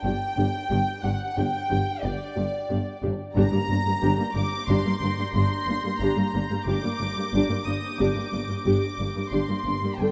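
Intimate violins carry the sul tasto melody in this tense, uneasy suspense film-score fragment in G minor at 90 BPM in 5/4, over a pure, floating second violin line and dark, woody viola accompaniment, while rich cellos and distant double basses hold a low G, and soft-malleted, round timpani and a faint high violin texture enter at 3.4 seconds as the harmony moves from Dsus4/G to Gm, all set in a vast, echoing cathedral reverb.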